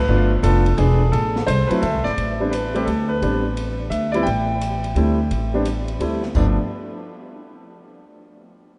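Swinging and warm, this short excerpt from a longer jazz piano trio piece moves briskly in 3/4 at 173 BPM. A clear, up-front concert grand carries the melody over a woody pizzicato upright bass, while an open drum kit, entering at 0.4 seconds, adds dark cymbals, a medium-tuned snare and a punchy kick. It all sits in a vast, echoing cathedral reverb, with harmonies drifting through extended and suspended chords such as Am11 and D9sus4 before the playing stops at 6.6 seconds.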